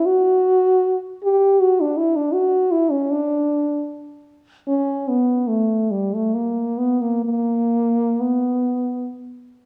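A classical excerpt for unaccompanied French horn, cut from a longer piece, unfolds in B minor with a meditative, mournful air. The tempo is free and rubato, drifting between 51 and 83 BPM within a 3/4 metre. The horn plays solo and up front from 0.0 to 9.2 seconds, moving between G3 and G4 with a mellow tone, light vibrato and a smooth top. A wet recital hall reverb with an RT60 of 1.3 seconds gives the line a resonant, spacious bloom.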